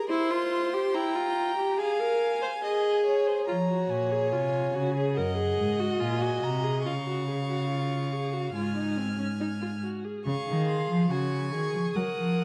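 In a straight 4/4 at 71 BPM, this driving yet contemplative fragment of a baroque-style fugue for string quartet opens in F minor before settling into D-flat major at 3.5 s, when the cello enters. A soft-attacked, expressive top violin sings the melody with vibrato and portamento while a rich, focused second violin carries its own line below. The viola and cello stand up front with smooth, vibrato-laden tone in a dark, warm production bathed in a long concert-hall reverb.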